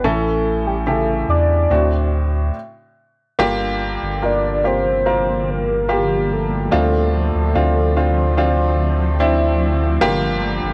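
A velvety synth lead, shimmering with chorus, tremolo and a slapback echo, opens this heartbroken, longing pop passage at 72 BPM in 4/4. It sings over a woody, up-front upright piano with audible action noise and a deep, round analog bass, moving from A to D7 before a stop at 2.5 s. The music then settles into Gm7 and Dm7, where a cloudy, evolving granular pad drifts in softly at 4.5 s, and the lead falls away at 8.8 s in this section cut from a longer piece, set in a light reverb.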